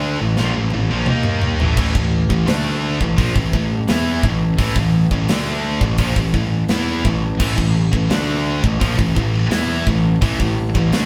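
Aggressive and relentless, this heavy metal excerpt drives forward at 85 BPM in a straight 4/4, cut from a longer piece and built on an A5 chord from the opening. Three electric guitars play the riff together from the start: a heavy high-gain guitar with distortion sits up front, a scooped high-gain guitar with distortion fills in behind it, and a double-tracked, overdriven crunchy guitar adds a very quiet, warm layer underneath. A growly fuzz bass, picked and run through overdrive, sits up front in the low register. The tight metal drum kit enters at 0.4 seconds with a fill that runs to 1.8 seconds, using crash cymbal, hi-hat, kick, snare and toms, with bright cymbals, a medium-tuned snare and a tight kick. The kit has an airy, polished big-room sound, and the whole band sounds as if it is playing live in one room with moderate studio reverb.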